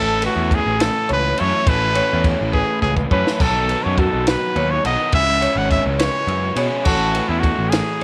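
A light reverb sits over this short cut from a longer math rock and midwest emo piece, and its mood is bright and wistful, moving at 69 BPM in a straight 6/8. Up front, a clear trumpet carries the melody from E4 to F#5 with vibrato, a smooth top and a punchy pop-style tone, trailed by a slapback echo. Beneath it, an electric guitar through a small old amp plays slightly broken-up, compressed arpeggios bathed in spring reverb until 7.4 seconds, while a double-tracked, crunchy overdriven guitar sits in the background with a riff. A fuzz picked electric bass, punchy and up front, adds gritty overdrive to the low end, and a compact cocktail drum kit enters at 0.2 seconds with a high-tuned snare, tight kick and dark crash and ride cymbals in a tight booth sound, playing a fill from 2.5 to 3.4 seconds. The harmony moves from Aadd9 through B9 and C#m7 before returning to Aadd9.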